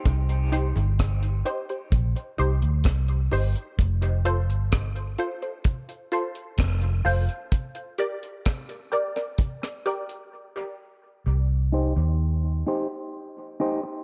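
Light reverb and small-room ambience frame this heavy, deep dub reggae passage, cut from a longer piece and moving in a straight 4/4 through Cm, F and Gm. A round, punchy, foam-muted vintage electric bass sits up front beside a dry, dark reggae kit of hi-hat, tight kick and rim click, while a detuned sawtooth chord stab adds mellow, fast-attack hits with short decay, colored by phaser and tape echo. After the break gives way at 11.3 seconds, a clean semi-hollow electric guitar enters at 11.7 seconds under a low-pass filter sweep and tape echo.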